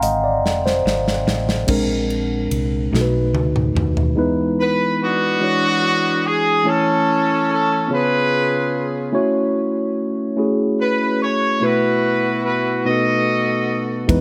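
Slow gospel in 6/8 at 48 BPM, counted in dotted quarters, with a reverent, soulful mood, heard as a short cut from a longer piece. A mellow tine electric piano with lush chorus carries the accompaniment throughout, opening with a brief solo spot before the harmony settles into E major at 4.2 seconds on an Emaj7. A dark, round hollow-body electric bass and a studio drum kit with bright cymbals, punchy kick and medium-tuned snare play through the opening, the drums adding fills before both drop away at about 4.2 seconds and return only at the very end. From 4.6 seconds a clear horn section with light vibrato takes the melody, sounding roomy and slightly distant yet still up front. The chords move through E13, Amaj7/E, C#7 and F#m7 to a B7sus4 and then a B7. Light reverb and a small room ambience frame the whole.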